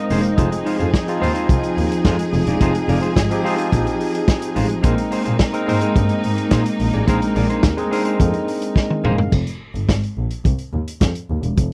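Disco at 107 BPM in a straight 4/4 with a celebratory, glamorous mood, this dry, close 1970s-style studio excerpt opens on a Bb9sus4 with a barky, lightly overdriven tine electric piano adding fills, a lush bowed string section holding sustained chords, a dark, clean fingered electric guitar, an expressive double bass with vibrato and portamento, and a punchy, muffled vintage drum kit whose fill at 8.8 seconds leads into a closing stretch from 9.3 seconds where only bass and drums carry on until 11.7 seconds.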